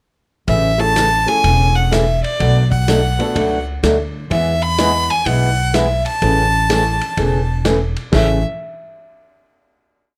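A swung 4/4 groove at 126 BPM opens this short, complete western swing piece in A major, where a vintage drum kit plays a backbeat and ride cymbal pattern with dark cymbals, a punchy kick and a rolled-off top, sitting mid-forward in the mix. An up-front upright bass plucks a woody two-beat line of roots and fifths with walk-ups, while a picked, ladder-braced acoustic guitar with old strings adds a boxy four-to-the-bar rhythm. A clear upright piano joins at 0.8 seconds with syncopated comping in close voicings and long sustain. Over this, a single bowed fiddle carries a smooth, rich, motif-based melody with light vibrato, close and up front, over a progression of Amaj7, Bm7, E and back to Amaj7. The down-home, playful tune settles onto a final chord from 8.1 seconds, all in a light reverb.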